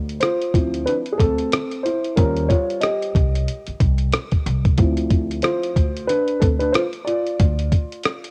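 Swung sixteenths at 92 BPM in 4/4 drive this cool, mellow jazz-hop groove. A gritty, compressed sampler-style drum kit with a thumpy kick, hi-hat and rim click sits up front beside a dark, boxy grand piano that solos over Dm7 and Eb13 in D dorian, both carrying a cassette tape tint. A woody pizzicato upright bass plays low until it stops at 7.7 s, and the small home-room ambience frames this short cut from a longer hip hop piece.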